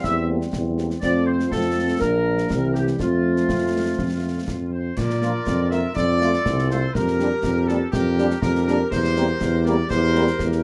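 A warm, up-front tuba carries the bass line through this festive, spirited march for wind band in a straight two-beat metre, cut from a longer piece. Above it, a trumpet section sings the melody with light vibrato and a loose, classical ensemble feel, sounding distant and roomy. A tight woodwind section adds a second line with a soft attack, while a dark trombone section holds sustained chords in the background. Mellow, close-miked French horns join at 0.3 s with accompaniment, and concert snare, bass drum and clash cymbals with a shadowy cymbal tone keep time close and dry. A moderate small-room reverb ties the band together, and the harmony moves to a new passage at 5.0 s that returns to a C7 chord near the close.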